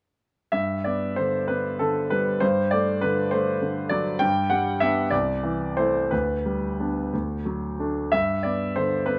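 A romantic classical character piece for solo piano unfolds in 6/8 with a flexible, rubato feel, its mood lyrical and passionate. A concert grand carries everything alone from 0.5 to 9.2 seconds, spanning a broad compass from deep bass notes up into the upper middle register. The instrument sounds clear and open, placed up front, with a rich low end grounding the texture. The harmony stays rooted around the home chord, drifting through a dominant seventh over the tonic in the bass, a minor chord and a cadential approach before settling home again near 8.1 seconds. Light reverb adds a touch of space around this brief passage, which is cut from a longer piece.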